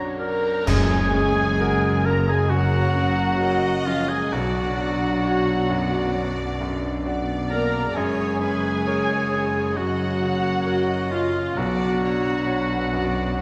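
Hopeful and moving, this excerpt of an emotional cinematic film score unfolds at a rubato 66 BPM in F# major, with muted violins carrying a veiled, con sordino melody over second lines from a mellow clarinet, a warm oboe and a further muted violin section. A clear baby grand piano with audible action noise, hushed muted violas, dark distant French horns holding sustained chords, ringing thumb-plucked harp arpeggios, and muted cellos and double basses fill out the harmony, which moves between Bmadd9 and F#. At 0.7 s a brief accent brings in dark clash cymbals with concert bass drum and timpani, all set in a wet recital hall reverb.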